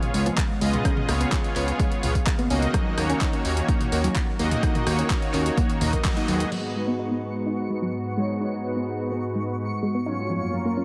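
Progressive house at 127 BPM in G# dorian, this short cut from a longer piece feels dreamy yet driving, set in light reverb and digital ambience. A smooth, detuned analog pad holds sustained chords in the background with chorus, while a soft supersaw plays low-pass filtered stabs with digital delay, both pumping against the sidechain as the harmony moves from C#7 to D#m7. A gentle, wave-folded pluck with a dark, round tone traces chorused, delayed arpeggios, and a fat, saturated sawtooth bass sits underneath with a fast attack. A punchy, overdriven electronic kick sits up front alongside a tape-tinged deep house kit of crash, handclaps, hi-hat and rim click recorded again in a small room, with electronic toms and congas tucked in the background. After a band accent at 6.0 seconds the drums, percussion and bass drop away, and from 6.5 seconds a filter sweep runs on the supersaw as the chords shift to G#m7 and then F#maj7. 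From 6.8 seconds a twinkling granular FM texture adds a bright, sparkling octave-up shimmer with its own reverb.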